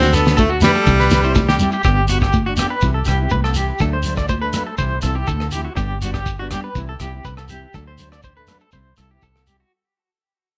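An edgy, up-front tenor saxophone with tape echo leads the first 1.6 seconds of this danceable, carefree highlife guitar band excerpt at 122 BPM, heard alongside a twangy, slightly broken-up electric guitar with tremolo playing arpeggios over a full-bodied fingerpicked steel-string acoustic guitar, round foam-muted fingered bass, a muffled cloth-damped drum kit with a fat snare, grainy shekere and bright high-tuned congas in the background until 5.6 seconds, as the chords cycle through D, C and G and the music fades out from 1.8 seconds.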